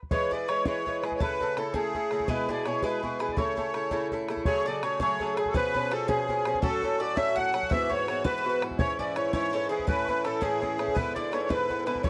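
A damped, tight bodhran opens this bright, cheerful Celtic jig in 6/8 at 111 BPM in A major. At 0.1 seconds, an up-front, reedy accordion with sweet, light tremolo tuning takes the melody, over a metallic, double-strung Irish bouzouki accompaniment, with a woody mandolin in the background and a very quiet, airy wooden flute with vibrato playing distant second lines, all in a dry, close 1970s-style studio sound with light reverb, as the harmony turns toward F#madd9 at 4.5 seconds before closing on E7.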